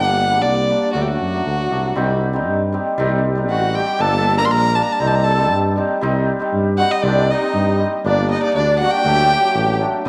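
A rich, nasal violin carries the melody up front with vibrato and smooth, even bowing, its boxy tone touched by a slapback echo and featured as a solo through the first 6.0 seconds. This is a soulful, bittersweet klezmer piece in 2/4 at 118 BPM, a straight-feel passage cut from a longer work in C dorian sharp4, moving through Gm, D and Cm. Beside the violin, a bright, hammered cimbalom rings out with shimmering acoustic accompaniment, while a breathy tuba holds the bass with mellow vibrato, soft attacks and scooped, jazz-style notes. From 3.5 seconds a reedy musette accordion joins in the background as a second line, its vintage, band-limited sound also carrying a slapback echo. The whole ensemble sits in a small room, bathed in a wet echo-chamber reverb with a 1.9-second decay.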